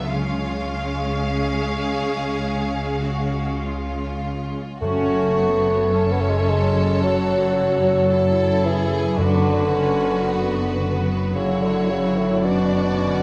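Classical orchestral music in a slow romantic movement, yearning and elegiac, with a flexible rubato pulse and a moderate concert hall reverb around the ensemble. A distant violin section carries the melody with soft-attack, expressive vibrato, while a second violin section sings a smooth, even inner line closer by, and lush violas add accompaniment with portamento slides. A concert harp rings out mellow fingerpicked arpeggios in the background, and beneath it all a rich cello section and a focused double bass section hold the bowed bass line. From 4.8 seconds a mellow solo bassoon steps up front with a punchy, roomy tone and light vibrato, joined by very quiet timpani struck with soft mallets, round and dry, which stop at 10.8 seconds. The harmony settles from C# onto F# minor before drifting to B minor over an F# bass, leaving the passage suspended as if cut from a longer movement.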